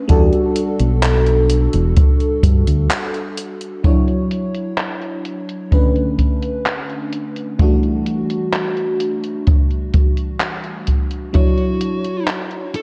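A slow, straight 4/4 pulse at 64 BPM anchors this hazy, melancholic vaporwave excerpt in E dorian, with a boomy, up-front acoustic kick sounding from 0.1 s to 11.5 s beneath a gated 80s digital drum machine whose handclaps and hi-hats carry gated reverb, filtered highs and the grain of a large room. A round, punchy fingered electric bass sits up front only briefly, playing from 0.1 s to 2.9 s, after which a short break opens the texture. Throughout, an FM electric piano with a soft pad layer supplies dreamy, detuned chords with a fast attack and decaying tail, bathed in lush chorus and analog delay as the harmony moves from a rootless Em11 through Dmaj9, Bm9/D and back to Em11. Near the close, at 11.3 s, a dark, compressed fuzz lead guitar enters with a brief phrase between F#4 and A4, roughened by distortion, 12-bit sampler grit and tape echo as the chords return to Dmaj9. The production is dark and cassette-soaked, with light studio reverb giving the whole a faded haze.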